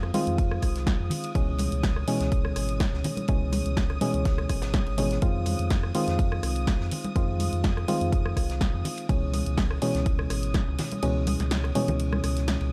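Hollow, percussive organ stabs with chorus and delay sit up front over a deep, saturated sub bass with octave and a silky detuned analog string pad, all three pumping with the sidechain. A punchy analog drum machine's hi-hat, rim click and snare and a natural acoustic kit's ride and snare in the background fill out this smooth, warm deep house cut at 124 BPM as Fm7 and Dbm7 alternate, while damped congas play softly behind and an overdriven electronic kick enters at 0.4 seconds and drops out at 11.0 seconds.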